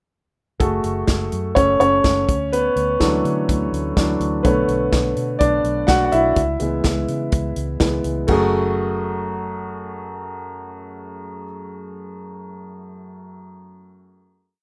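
A woody upright piano leads this short, complete piece of piano-driven pop in F# minor, playing close-voiced eighth-note chords with grace notes and a long sustain, sitting up front in the mix. The mood is dramatic and earnest, moving at 125 BPM in 4/4 with a light sixteenth-note swing through a verse of F#madd9, Dadd9, Bm7 and C#m7 before settling back on F#madd9 as a held final chord from 8.3 seconds. A natural country drum kit, recorded with an acoustic studio-room sound, stomps out a four-on-the-floor pop beat with a punchy kick, medium-tuned snare, hi-hat and crash, stopping at 8.4 seconds. Underneath, a vintage foam-muted fingered electric bass drives steady eighth notes with a dark, round, amped tone until 11.4 seconds, leaving the piano to ring out alone until 14.6 seconds. Moderate studio reverb and a rough home-demo mix give the recording a plain, unpolished character.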